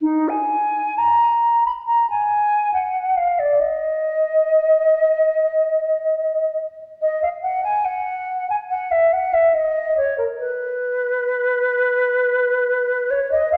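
Solemn and introspective, this baroque-style classical fantasia for unaccompanied flute unfolds in Eb minor at 71 BPM in 4/4, though the rubato feel lets the pulse breathe freely. A single silver concert flute carries the whole 13.6-second fragment, moving between Eb4 and Cb6 with a mellow, hollow tone. Its sound is pure and metallic, shaded by vibrato, and each note begins with a crisp attack. The instrument sits up front, framed by a wet recital hall reverb with a 1.7-second decay that lends the lines a spacious, contemplative glow. Tuned to A4 = 439 Hz, the passage forms one continuous section cut from a longer piece.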